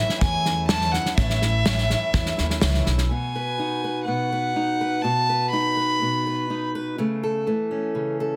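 In a straight 4/4 feel, this anthemic, uplifting indie folk fragment opens with a natural small-room drum kit with a punchy kick, a growly pizzicato upright bass and a bright, freshly strung archtop guitar, all under a reedy, gut-string bowed fiddle melody. At 3.1 seconds the kit, bass and archtop drop away and a fingerpicked steel-string acoustic guitar takes over the accompaniment, its concert tone carrying audible finger squeak as the harmony moves from B toward A/C#. The fiddle sings on until 6.7 seconds, while light studio reverb and a dense, heavily limited master give the sound a full, modern polish.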